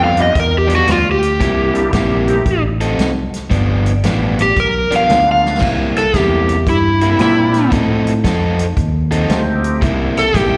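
A dark, up-front slide guitar, one of two overdriven guitars, played with fingerpicks and carrying plate reverb and slapback echo, leads this rollicking, swaggering electric blues shuffle and takes a solo from 5.6 seconds to the end of the excerpt. Beneath it, the second guitar picks out a compressed riff, a reedy, bright tonewheel organ with key click and a slow rotary speaker comps until 9.8 seconds, a round fingered bass anchors the low end, and a vintage kit with a punchy kick and rolled-off top drops a fill at 5.4 seconds. The whole performance comes across as a live gig heard through the venue's PA, ringing in a recital hall's reverb.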